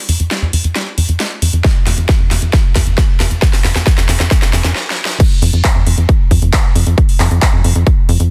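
Uplifting trance at 135 BPM in 4/4, emotional and soaring, cut from a longer piece. A tight sequencer bass sits up front from the start, a dark, sawtooth-and-square line with a fast-attack filter pluck that decays and evolves, pumping under sidechain compression. Alongside it a big-room dance drum kit carries a build-up of drum fills with crash cymbal, handclaps, metallic high-pass-filtered hats and a huge snare, its kit re-recorded in a small room. An overdriven, punchy electronic kick enters at 1.6 seconds, layered and up front, before a brief stop at 4.8 seconds gives way to the drop at 5.2 seconds. The mix is dry with little reverb, finished as a dense, heavily limited modern master.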